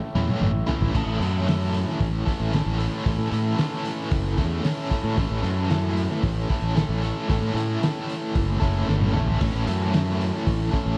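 A steady, straight 4/4 pulse at 113 BPM carries this trippy, hazy psychedelic rock excerpt in A major, cut from a longer piece and steeped in the long, dreamy tail of a cathedral-sized reverb. A cloth-damped drum kit opens with a fill and returns for another around 8.9 seconds; its thuddy, muffled sound pairs a fat snare and tight kick with dark cymbals, a gritty lo-fi saturation and a rolled-off top. A fuzz-drenched fingered bass sits up front, punchy and overdriven, while an overdriven electric guitar plays a bright, double-tracked, picked riff colored by tremolo. For just the first second, a very quiet hand-pumped harmonium breathes a reedy, nasal, vintage drone beneath the band before dropping out. Guitar, bass and drums then carry the single section through to the 11-second mark.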